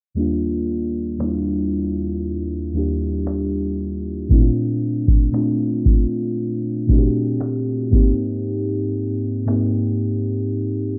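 Muffled by cassette and a low-pass filter sweep inside a digital ambience, this dreamy, tender contemporary R&B fragment in Eb major drifts at 58 BPM as muted, warbling felt-like synth keys with chorus move through Ebmaj9, Bbmaj9 and Abmaj9, while a booming analog drum machine with a deep kick and finger snaps, re-recorded in a small room, sits up front from 1.2 to 9.7 seconds.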